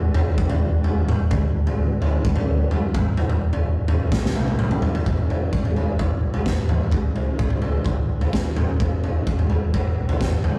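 Trippy and hypnotic, this short psychedelic rock excerpt cut from a longer piece moves in a straight 4/4 groove. A raw garage drum kit sits up front, its punchy kick, medium-tuned snare and toms carrying a gritty, saturated edge with a rolled-off top and the pumping character of a bright stone room. Beneath it, a fingered electric bass plays a dark, round, amped line from E1 to G#2, set back in the background. A drum fill from 4.1 to 5.1 seconds marks the turn into a new section that carries on to the end at 10.6 seconds. The whole take has the rough feel of a rehearsal room, with light reverb and a warm saturation.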